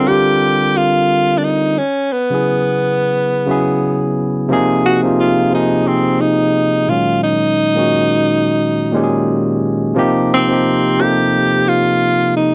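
A breathy tenor saxophone plays a jazz-style solo with light vibrato and scooped notes over a barky, clean tine electric piano heard through a combo amp, both up front, moving through suspended chords in this sultry, soulful R&B excerpt with a swung sixteenth-note feel, captured in a dry, close 1970s-style studio sound with light reverb and cut from a longer piece.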